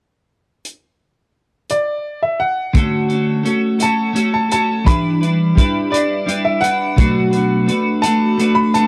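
A vintage drum kit opens this jangly, upbeat indie rock excerpt at 0.6 s, its hi-hat and punchy kick sounding natural with a rolled-off top in a dry, close 1970s-style studio. An upright piano enters at 1.7 s with a brilliant, woody melody full of audible action noise and long sustain, carried by tape echo. At 2.7 s a clean, twangy, double-tracked twelve-string electric guitar riff arrives as the straight 6/8 groove moves through Dmaj7, Em7 and Bm7.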